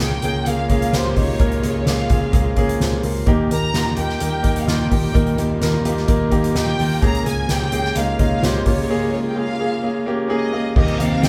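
Uplifting and anthemic, this piano-driven pop passage at 128 BPM in Eb mixolydian sets a clear, intimate grand piano with audible action noise up front, a distant, lush violin section carrying the melody, and a background string section holding sustained chords with vibrato and portamento, over a round, foam-muted vintage electric bass. A soft-mallet drum kit with a fat snare, punchy kick and dark cymbals enters at 0.2 seconds, and after a break where the piano plays a fill at 10.1 seconds, a mellow French horn section joins at 10.8 seconds with a second line. The band sounds as if playing live in one room with moderate reverb, and the passage is cut from a longer piece.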